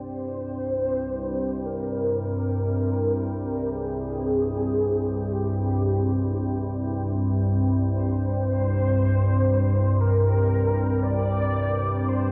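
Unfolding in free time, this unsettling, ominous dark ambient drone fragment rests on a detuned, organ-like drone held low and up front, entering at 0.1 s with its own ensemble chorus and reverb. Above it, a deep, moody analog pad sustains detuned sawtooth chords with a sub octave and chorus. A round, horn-like synth lead with vibrato, a filter sweep and a warbling vintage character carries the melody through ensemble chorus and diffuse ambient delay, all set in a wet cathedral reverb with a 5.8-second decay.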